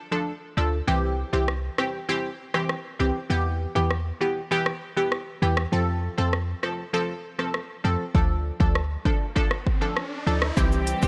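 A punchy, bright chord stab with a chorus sheen opens this bouncy, hypnotic dancehall clip, moving through Dm, C, Em and F, and a deep, boomy 808-style bass with a clean, mellow sine tone joins almost at once. From 1.5 seconds an electronic afro-pop drum kit comes in up front, with a deep kick, crisp hi-hats, rim click and shaker roughened by vintage 12-bit sampler grit, while an electronic riser sits in the background from 9.0 seconds. At 10.6 seconds a lush, bowed symphonic string section enters on sustained chords, pumping with sidechain, all set in light reverb.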